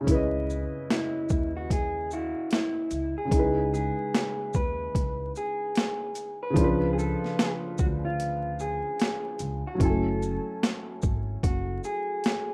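A dark upright piano opens this hazy, melancholic lo-fi hip hop excerpt in C# minor, its mellow, intimate tone carrying audible action noise and softened by cassette tape and a low-pass filter. Almost at once a sampler-style boom bap kit arrives with a thumpy kick, high-tuned snare, hi-hat and shaker. The kit is pitched down, compressed and overdriven into a gritty sound, re-recorded in a large room and placed up front. An upright bass plays pizzicato underneath with a woody, growly body, while at 0.9 s an electric guitar through a small old amp picks out the melody in a slightly broken-up, filtered lo-fi tone. At 74 BPM with a swung sixteenth-note feel, the harmony moves from C#m9 to C#7b9 at 6.6 s and F#m7 at 9.8 s. Light reverb, vinyl crackle and a rough home demo mix frame the recording.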